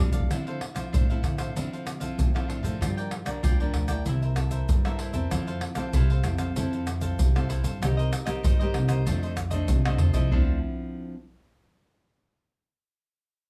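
A straight samba-and-choro groove in four, played up front by a deep surdo, tube shaker, pandeiro and tamborim struck with soft hands, opens with a short drum fill and carries this lively, yearning fragment of a longer piece. A woody, thumpy pizzicato upright bass anchors the harmony as a crisp, mellow picked cavaquinho and a fingerpicked classical nylon-string guitar, its finger squeaks audible, move through Dm9, Gm7, C6, Fmaj7, Cm7 and F6 in a small, lightly reverberant room. A second fill at 9.9 seconds leads back to Dm9, where the other parts stop and the guitar rings on alone until 11.1 seconds.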